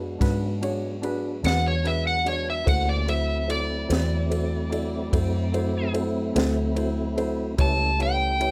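A straight-feel 12/8 slow blues at 49 BPM sets a swaggering, gritty mood, carried by a foam-muted, round electric bass up front and a compact cocktail kit whose punchy kick, high-tuned snare and dark ride cymbal come in at 0.2 s. A dark, mellow grand piano with short sustain and a fat tonewheel organ, lightly overdriven with chorus vibrato and a slow rotary speaker, hold the harmony over E7, D7 and A7. At 1.5 s an overdriven slide guitar, played with fingerpicks and bathed in plate reverb, steps forward for a singing solo in this excerpt, all set in a light room reverb.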